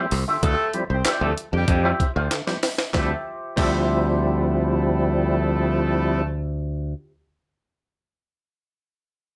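Funk at 95 BPM in a straight 4/4, this short, hypnotic cut sits in D minor and opens on a Dm11 chord. A percussive tonewheel organ throws fat stabs with key click, light overdrive, chorus vibrato and a slow rotary speaker, while a clean, twangy electric guitar pushed through an envelope filter and a subtle chorus picks out accompaniment. A modern fingered electric bass, bright, growly and punchy, sits up front beside a gritty, pitched-up breakbeat sampler-style kit with a thumpy kick and a high-tuned snare, its crash, hi-hat and handclaps packed together by compression. A mellow horn section carries a second line in octave doubling, its light vibrato and tube saturation heard from a distant, roomy position, and a very quiet, close group handclap adds crisp human percussion until the kit drops out at 3.8 s. A drum fill from 2.3 s leads into the next section at 3.0 s, all within a moderate club reverb.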